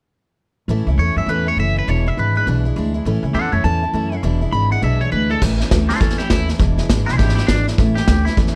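A dry, close-sounding excerpt of upbeat, retro rockabilly in A major, swinging at 203 BPM as the chords move between A and E7. A twangy, slightly broken-up electric guitar carries the melody with phaser and tape echo, over a bright, full-bodied picked steel-string acoustic guitar and a woody, thumpy pizzicato upright bass. At 5.4 seconds a vintage brush kit joins up front with a punchy kick and dark cymbals for the final stretch of this fragment of a longer piece.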